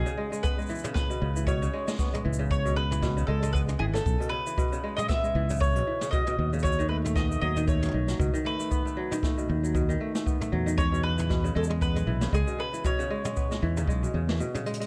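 A dark, lightly reverberant production frames this autumnal, delicate folktronica excerpt in C# minor, moving at 116 BPM with a gentle 16th-note swing over chords of C#m7, B7 and E6. A ringing, crisp kora plays up-front fingerpicked arpeggios while a mellow, round mandolin carries the picked double-string melody, both touched with tape echo, as a growly, bright fingered electric bass enters at 1.2 seconds. Brushes on a natural studio kit with a medium-tuned snare, hi-hat, shaker and toms sit beneath a boomy kick, and a short break closes out with a drum fill at 14.7 seconds.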